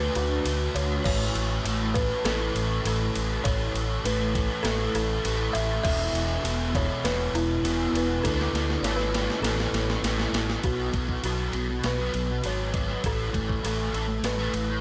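Buzzing, woody kalimba with tape echo carries the melody over a double-tracked fuzz guitar riff with chorus, a punchy overdriven bass and a crisp, thumpy 8-bit drum machine whose fill runs from 8.2 to 10.6 seconds, giving this hazy, wistful shoegaze and dream pop excerpt a new section at 10.6 seconds that settles on an Asus2 chord.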